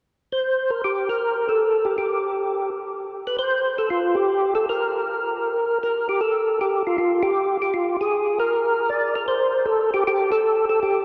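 A swung 4/4 at 156 BPM gives this short jazz cut from a longer piece a greasy, swinging feel, with a solo percussive tonewheel organ playing from 0.3 to 11.0 seconds between F4 and D5, tuned to A4 = 439 Hz. The organ sits up front with a fat, clean tone, third-harmonic percussion, audible key click, chorus vibrato and a slow rotary speaker. A vast cathedral reverb with a 5.5-second decay makes the space ring and echo, and the phrase shifts into a new section at 6.2 seconds.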